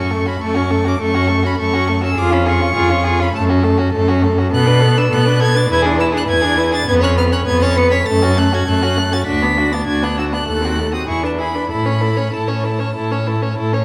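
A quick, lively and graceful classical-period string quartet movement opens at 101 BPM in straight 4/4, with all four players entering together: a high first violin carries the smooth, even melody, while a second violin adds a soft-attacked, expressive line with portamento, heard close. Beneath them the viola gives focused accompaniment with a smooth top, and an up-front, rich cello anchors the bass, every part bowed with vibrato. The harmony moves from F# minor through dominant and diminished chords to settle on A by about 11.7 seconds, all set in the wet bloom of a scoring-stage reverb in this 13.8-second cut from a longer piece.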